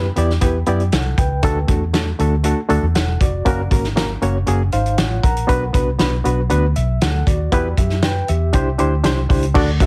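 A barky, reedy electric piano with light overdrive and fast tremolo opens this joyful, upbeat 1960s-style soul excerpt alongside a dark, round, foam-muted fingered electric bass, with an up-front acoustic drum kit joining at 0.2 seconds with punchy kick, fat snare, hi-hat and crash. The harmony moves from Em through D, F# and Bm before returning to Em and Cadd9, and the piano adds a fill between 4.5 and 5.5 seconds. Light reverb and heavy multiband compression give the whole a squeezed, radio-like sound.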